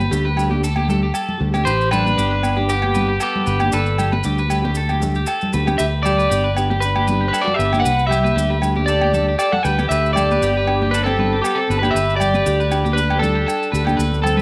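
Highlife guitar band music in a danceable, sunny mood, swinging lightly in 4/4 over a round, punchy fingered electric bass and a fingerpicked steel-string acoustic guitar, with an arpeggiating electric guitar at the edge of break-up carrying a warbly pitch drift and slapback echo. From about 1.6 seconds a twangy, slightly broken-up electric guitar takes the melody up front while a breathy, whispered alto saxophone with light vibrato adds a second line behind it. Ringing agogo bells, high-tuned congas and grainy maracas fill out the percussion, all in a moderate echo-chamber reverb, and a drum fill starting at 14.0 seconds closes this excerpt cut from a longer piece.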